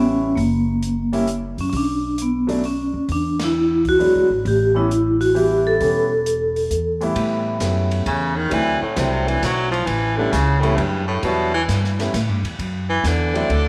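A moderate plate reverb colours this jazz recording. Cut from a longer piece, it swings playfully at 132 BPM in 3/4, centred in A mixolydian. Ringing, metallic vibraphone carries the melody up front until 7.0 seconds, with fast motor vibrato on its medium-mallet tone. A woody upright piano with audible action noise and long sustain accompanies, and a thumpy pizzicato upright bass sits close in the mix. The open drum kit, airy and polished in a small room, adds dark cymbals on ride and hi-hat, a medium-tuned snare and a boomy kick, and the band hits an accent at 3.3 seconds. A clear, punchy baritone saxophone takes the solo from 8.1 seconds, forceful and jazz-styled, with vibrato and scooped notes.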